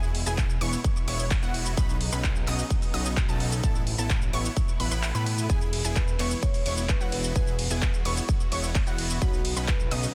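Euphoric and triumphant, this festival progressive house excerpt in E major drives at 129 BPM, with huge detuned supersaw chords and a bright, decaying unison pluck arpeggio pumping against a fat, saturated analog bass. A very quiet bowed string section sustains chords beneath, while a big-room kit supplies handclaps, hi-hat, ride cymbal and shaker. A punchy, up-front kick drops out from 5.0 to 5.5 seconds, and a breathy, flute-like synth lead with vibrato takes up the melody at 5.4 seconds, all within a dense, heavily limited mix.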